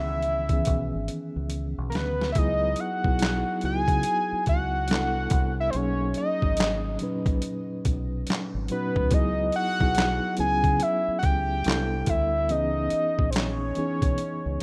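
Smooth and sultry, this neo-soul R&B excerpt moves at a relaxed 71 BPM in 4/4 with a swung sixteenth-note feel, set in C# dorian. A fat, nasal analog lead carries the melody up front, its sawtooth-and-square tone thickened by a sub octave, chorus, vibrato and a filter sweep. Beneath it, a reedy electric piano plays mellow chords through its built-in speakers with a fast tremolo, while a dark, round fingered electric bass holds the low end with a punchy, direct sound. The gritty, compressed sampler-style drum kit enters at 0.2 seconds with a thumpy kick, medium-tuned snare, hi-hat and handclaps, pitched down and prominent in the mix, and a drum fill runs from 0.7 to 2.4 seconds. The harmony drifts from C#m9 and C#m11 through Cmaj13 and Bmaj13, and the rough home-demo mix sits in light digital reverb.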